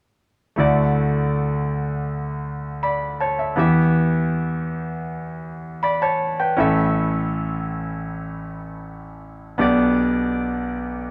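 Tender and hopeful, this short pop passage is cut from a longer piece and rests entirely on a clear concert grand piano playing accompaniment from 0.6 to 11.1 seconds. The piano sits up front with a polished, present tone, a deep bass reaching down to A1 and a short sustain that keeps each chord distinct. Its harmony moves from Dadd9 to Em, then A, and settles on G/B at 9.6 seconds, giving the phrase a gentle sense of forward motion. A wet stone room reverb with a 1.0-second decay surrounds the performance, and the sound suggests a band playing live together in one room. The steady, straight four-beat pulse lets the piano carry the quiet optimism of the moment.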